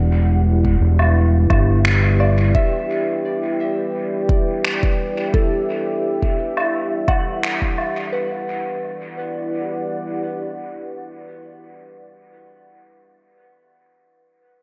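A deep, warbling ambient pad holds a sustained Em9 chord while a soft, pure FM synth bell plays arpeggios through chorus, dub echo and a filter sweep, over a round, overdriven fingered electric bass that sounds only until 2.5 seconds. This meditative, hazy ambient dub fragment in E minor moves at 86 BPM with a light 16th-note swing, as an up-front overdriven electronic kick enters at 0.6 seconds and mid-forward woodblock and finger snaps with dub echo join at 1 second, both playing until about 8 seconds. The pad ends at 11.7 seconds and the mellow bell lingers to 13.4 seconds in a lightly reverberant studio space.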